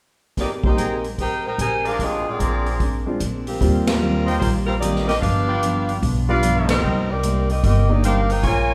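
A warm saxophone section with vibrato carries the melody from 0.4 seconds over picked steel-string acoustic guitar and a roomy swinging big-band drum kit with a punchy kick. A concert grand piano joins in the background, along with a woody pizzicato upright bass and stabs from a clear trumpet section. The band hits accents at 3.8 and 6.6 seconds in this brassy, swinging big band jazz fragment set in a moderate recital-hall reverb.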